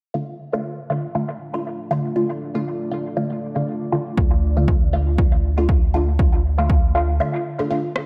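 Dub techno in D minor at 119 BPM, this short, hazy and cavernous fragment of a longer piece sits on a lightly swung 4/4 pulse and stays on a single D minor chord throughout. A muted, nasal chord stab built from detuned sawtooth tones runs from the start to 7.9 seconds, its resonant filter sweeping across the whole passage while a phaser and dub echo smear each short, plucked hit into the space. A deep, full-bodied pad of chorused sawtooth and sine layers fades in slowly at 1.4 seconds, sitting low in the mix with its own built-in reverb and a long, dark release. At 4.2 seconds a round, soft sub bass on D arrives alongside a punchy, overdriven kick that stands up front, with the bass, pad and stabs all pumping against it. A break opens at 7.2 seconds, and an overdriven rim click, low-pass filtered and trailed by dub echo, sounds briefly at the very end of this echo-heavy, lightly reverberant mix.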